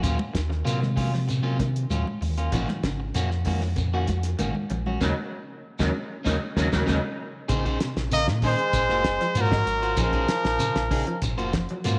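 Bathed in a moderate echo-chamber reverb, this intense, defiant afrobeat excerpt at 96 BPM rides a deep, full sub bass with octave and a cloth-damped, thuddy drum kit with a fat snare and tight kick, while a clean semi-hollow guitar picks arpeggios through ensemble chorus and tape echo. A slightly broken-up electric guitar adds stabs, a grainy, distant shekere sits far back, and bright, high-tuned congas play until 7.0 seconds, partway through a band accent and drum fill. At 8.1 seconds a brilliant, up-front trumpet with vibrato and scooped notes takes the melody over a roomy, wah-wah trombone with plunger mute.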